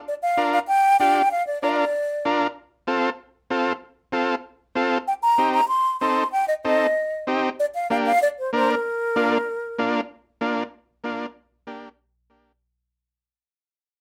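Latin instrumental in Bb major at a brisk 191 BPM in straight 4/4, sunny and joyful in mood, cut from a longer piece. A breathy concert flute carries the melody, up front with vibrato, tongued notes and lifted highs, playing expressively from 0.1 to 2.3 seconds and again from 5.1 to 10.0 seconds. Beneath it, an overdriven combo organ supplies accompaniment from 0.4 to 12.5 seconds, its vintage, buzzy tone thick with heavy vibrato and placed just as close to the front. The harmony moves from Bb6 through F, Cm, Gm and Bb before returning to Bb6 as the closing passage begins. From 10.1 seconds the organ carries on through a fade-out to the end. Close, detailed microphones and light reverb give the recording an intimate, present sound.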